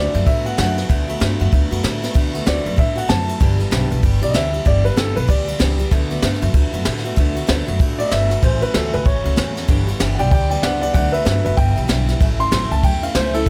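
Retro and rollicking, this rockabilly excerpt swings at 191 BPM in D major, with a woody upright piano carrying the melody over a bright, full-bodied picked steel-string acoustic guitar, a pizzicato upright bass, and an up-front jazz brush drum kit with dark cymbals, a high-tuned snare and a punchy kick, all in a dry room as the chords move through D6, G6 and A6.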